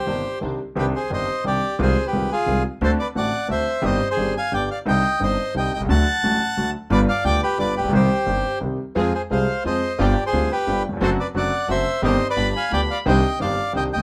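A reedy, airy bandoneon opens this tense, dramatic tango excerpt, sitting up front with the melody in C harmonic minor, joined almost at once by a clear, slightly worn concert grand piano, a woody pizzicato upright bass and a brief veiled string stab. The pulse runs at 176 BPM in 3/4, but the feel is rubato, pushing and pulling against the triple metre. The piano carries the accompaniment with a deep bass register and short sustain, while the steel-strung bass anchors the low end beneath harmony that moves through Cmadd9, D7 and G7 before returning home. The muted, con sordino string section stays very quiet, adding bowed stabs with vibrato that return from 9.0 seconds near the end. At 12.4 seconds a single dark violin slips in on a high B5, bowed with vibrato and portamento for a brief expressive line, all set in a light reverb.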